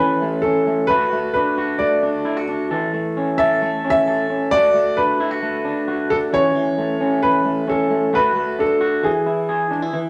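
A clear upright piano and an electric guitar through a small old amp start together, setting a bright, nostalgic indie pop mood at 133 BPM in a straight 4/4. The piano carries the melody in a narrow upper register, its woody, intimate tone close to the ear, with the noise of its action audible. Beneath it, the guitar plays fingered arpeggios with a twangy, slightly broken-up character, also placed up front. The harmony stays rooted in A major, moving through D, Bm7 and back before reaching E near the end. Both parts sound like a band playing live in one room, wrapped in a wet stone-room reverb. This excerpt is cut from a longer piece: the piano stops at 9.7 seconds and the guitar rings on until 10.1 seconds.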